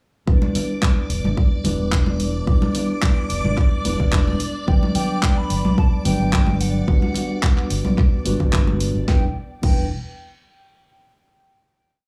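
A punchy four-on-the-floor electronic kick, a syncopated fingered electric bass riff, a mellow tine electric piano pumping with slapback echo, and a lush, vintage string machine with phaser and ensemble chorus open this groovy, cosmic nu-disco piece in E minor at 109 BPM, joined by thick-skinned congas in the background and a pop drum kit with fat snare, handclaps, hi-hat and crash. An airy, hollow concert flute with vibrato and analog delay then enters at 4.7 s with hook phrases over the Gmaj7 chord that follows the opening Em7. The piece is set in a small, nearly dry room and settles on a final Em7 at 9.1 s.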